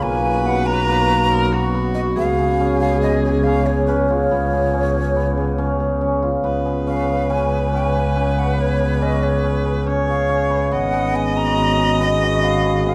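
A dark production set in a wet recital hall frames this restless, playful chamber piece in 5/4 at 140 BPM, in Db mixolydian and cut from a longer work. A breathy, unsteady jazz flute carries the melody with soft attacks and vibrato over a focused, bowed viola second line, while a shimmering, hammered cimbalom rings out arpeggios up front and a bowed double bass holds the low end with intense vibrato. The harmony moves to Db7 at 2.2 seconds and Abm7 at 10.7 seconds, with a new section arriving at 6.4 seconds.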